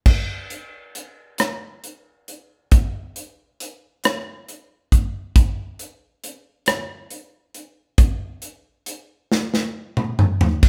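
Pop in a swaying 6/8 at 45 BPM counted in dotted quarters, this short cut from a longer piece carries a heartfelt mood, played entirely on an acoustic studio drum kit. Kick, snare, rim click, hi-hat, toms and crash cymbal sit up front with a polished, airy small-room sound, a punchy kick and a medium-tuned snare, all touched by light reverb as if the band were playing live together. A drum fill from 9.3 to 10.6 seconds closes the passage.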